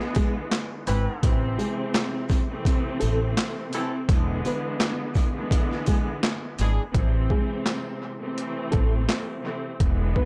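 A gritty, reflective boom-bap hip-hop excerpt in A harmonic minor opens on a compressed, pitched-down sampler drum kit with a thumpy kick, a high-tuned snare, handclaps, hi-hat and shaker, up front and overdriven with 12-bit grit. Beneath it sits a lush bowed string section with vibrato and portamento, colored by cassette tape and echo, at a swung 84 BPM. A dark, fingerpicked nylon-string guitar carries the melody with audible finger squeak from the background alongside faint jingly sleigh bells, while from 0.9 seconds a woody pizzicato upright bass and tight horn stabs with light vibrato join, the horns dropping out at 6.8 seconds in a small, echo-heavy room.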